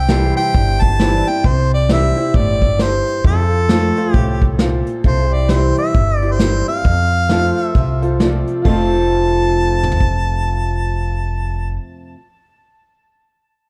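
A dark, lightly reverberant production frames this easygoing, heartfelt excerpt of honky-tonk and classic country in F major, swinging at 133 BPM in 4/4 over chords that move between C and F. Up front, a warm harmonica carries the jazz-style solo melody with light vibrato and scooped notes, touched by plate reverb and tape echo, while a woody, thumpy pizzicato upright bass on gut strings and a boxy, picked old ladder-braced acoustic guitar hold down the accompaniment. A brilliant vintage grand piano sits in the background, a clean, fingerpicked pedal steel guitar adds very quiet sustained chords with volume swells, and a distant, roomy brush drum kit with dark cymbals and a punchy kick plays until 10.1 s.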